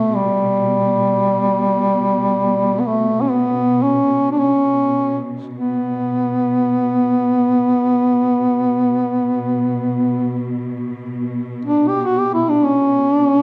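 A mellow duduk sings a solemn, longing Caucasian folk lament up front, its vibrato and scooped notes ranging from G3 to G4 in free time and B minor, over a dark, lush bowed cello section that holds a smooth, expressive drone on B2 with its own vibrato, all set in a moderate recital hall reverb across this 13.4-second excerpt cut from a longer piece.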